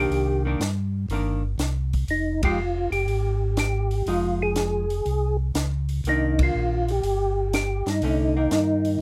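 A lightly overdriven, percussive tonewheel organ carries the melody through a slow rotary speaker with chorus vibrato and key click in this soulful, late-night swinging soul jazz organ trio excerpt, backed by clean, picked hollow-body electric guitar accompaniment, a round, mellow organ bass and a compact acoustic kit with a punchy kick, high-tuned snare and dark cymbals, all closely miked and dry, with band accents at 2.3 and 6.3 seconds.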